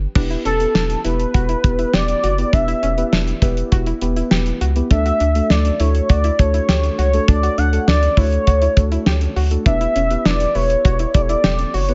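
Wistful yet bright, this synth-pop excerpt at 101 BPM opens on a round, deep analog bass at 0.0 seconds, joined at 0.2 seconds by a damped, fat-snared 70s drum kit bathed in gated reverb, muted felt-like synth keys with chorus, and a soft pluck playing arpeggios through tape echo in the background, before a velvety, detuned synth lead with vibrato takes the melody from 0.5 seconds over chords shifting between Emadd9 and Dadd9, all set in a studio ambience.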